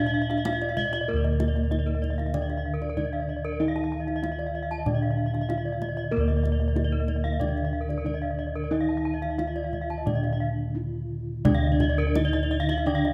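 This short excerpt of Balinese gamelan opens with a bronze metallophone carrying the melody in a mellow, soft tone from padded disc mallets, its paired tuning producing shimmering beats, while two bright metallophones struck with horn mallets spin arpeggios above it. Underneath, bossed gongs with padded beaters supply a round, beating bass that sits up front in the mix, and the kendang enters at 0.3 seconds with tight, soft-handed strokes. At 1.1 seconds a lower metallophone joins with an airy accompaniment, filling out the ringing bronze texture. The mood is hypnotic and shimmering at 85-95 BPM in straight 4/4, with a break at 10.4 seconds before a new section begins at 11.5 seconds. Close, detailed microphones and light reverb keep the metallic ring and the pulsing beats of the paired tuning vivid.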